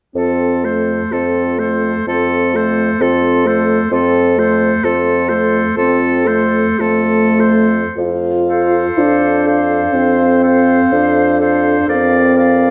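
Classical wind quintet music in a slow, romantic vein, this serene and lyrical passage from a longer piece moves with a flexible rubato pulse in 4/4. A warm, softly attacked oboe carries the second line with light vibrato, while a clear, vintage-toned clarinet and a mellow, distant French horn fill in the accompaniment over a punchy, up-front bassoon bass. At 8.5 s an airy silver flute enters with the melody, its tongued notes and vibrato floating from afar, and a moderate recital hall reverb surrounds the ensemble.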